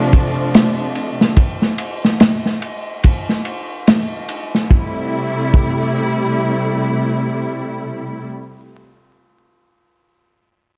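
This hypnotic, smoky trip hop excerpt opens on a lush symphonic string section holding bowed ensemble chords with a rich vibrato, set up front in the mix. A crunchy breakbeat kit joins almost at once, its punchy kick, medium-tuned snare and dark ride cymbal sounding saturated and gritty, with a rolled-off top. The groove moves at 72 BPM in 4/4 with a loose swing on the sixteenths, in A minor and tuned slightly flat of standard pitch. The harmony rests on Dm7 before shifting to Am7 at 4.7 seconds. The drums drop out at 5.8 seconds, leaving the focused strings to sustain alone until 8.3 seconds. The sound sits in a small room with a dark production, vinyl crackle and a muffled top end.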